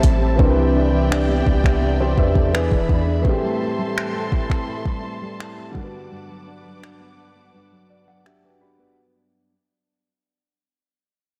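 Contemporary R&B with a late-night, sensual mood, this excerpt fades out from start to finish as a natural-sounding baby grand piano accompanies sustained chords from a bowed, intimate string section with vibrato, and a full-bodied, thumb-plucked nylon-string guitar plays arpeggios through digital delay. Up front, an electronic drum kit with a soft kick, metallic hi-hats and finger snaps carries soft clipping on the snare, while a deep, mellow 808-style bass holds long tones until 3.2 seconds. The harmony moves through Cmaj9, E7, Am7 and Gmaj7, and the piano adds a fill from 7.5 to 9.0 seconds. The recording sits in light small-room reverb with a blown-out, overdriven character.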